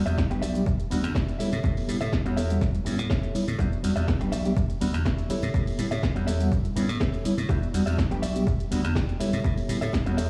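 A bright, punchy slap bass sits up front beside a dry electronic kick in this sensual, funky filtered disco house cut from a longer piece, moving at 123 BPM in E dorian over a repeating Em9 to A7 vamp, with sidechain pumping on the bass. A reedy, mellow electric piano with fast tremolo and phaser supplies the chords, while a clean, compressed electric guitar picks a bright riff and an analog drum machine drives hi-hat, ride, shaker and a punchy snare, all three pumping with the sidechain. Very quiet, ringing tambourine and congas add close acoustic color, and the whole track sounds as if played on a big sound system in a bare room with a large studio reverb.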